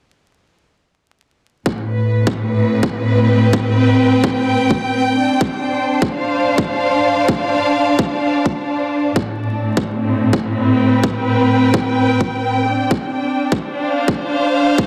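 Through a dense, heavily limited master dusted with vinyl crackle and a moderate studio reverb, this skippy, bouncy two-step UK garage excerpt in A minor moves at 128 BPM with a 60% sixteenth-note swing, as a tight, layered, tape-touched electronic kick recorded in a large room sits up front beside a bowed studio string ensemble, smooth on top with expressive vibrato and portamento, pumping under sidechain across Am9 and Dm7 from 1.7 to 14.9 seconds.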